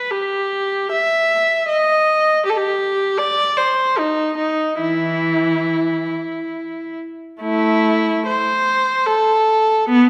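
A lone bowed viola opens this solemn, introspective fragment of a baroque-style suite movement in triple metre, its clear, smooth, even tone carrying vibrato and a flexible, rubato pulse. The single player sits up front in a reverberant recital hall, whose lingering resonance frames the melodic line across its two-octave range. The brief passage, cut from a longer piece, restates its opening material at 7.4 seconds before breaking off at 10.1 seconds.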